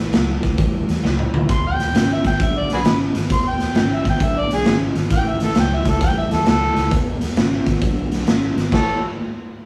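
Electric blues shuffle at 133 BPM in A mixolydian, laid-back and swaggering, with a slightly broken-up, tremolo-treated guitar riff riding over a dark, round, foam-muted fingered bass and a gritty garage drum kit whose punchy kick and medium-tuned snare sit up front in a bright stone room. After a drum fill at 1.0 s, an overdriven harmonica enters at 1.5 s, playing a mellow, jazz-inflected solo full of scooped notes and tongue slaps that sounds distant and roomy yet still forward in the mix. The changes move between A7 and E7 in a rough rehearsal-room recording with tube saturation and light reverb, cut from a longer piece.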